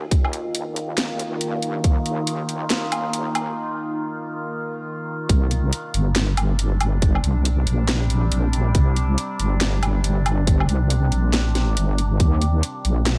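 Light reverb and a digital ambience give this cut from a longer deep dubstep piece a cavernous, dark atmosphere, set at 139 BPM in 4/4 with a half-time feel and a 60% swing on the sixteenths in C minor. An overtone-sweeping drone sits quietly in the background throughout, its sawtooth and sine layers slowly blooming into sustained chords with moving overtones, softened by chorus, its own reverb and a phaser. Up front, a heavy wobble bass built from detuned sawtooth and sine voices in unison growls low with a resonant, saturated edge, compressed and fast in attack yet mellow at its core, with chorus and a high-pass filter shaping it. A garage drum kit of handclaps, hi-hat, snare and woodblock runs across the whole passage, its cracking snare and bright hats sitting forward, while a tight, layered electronic kick punches in at the start, drops out at 1.9 seconds during the build-up, and returns for the drop at 5.3 seconds, running until 12.3 seconds. 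The harmony moves from Eb5 to C5 at the drop and back to Eb5 near the close.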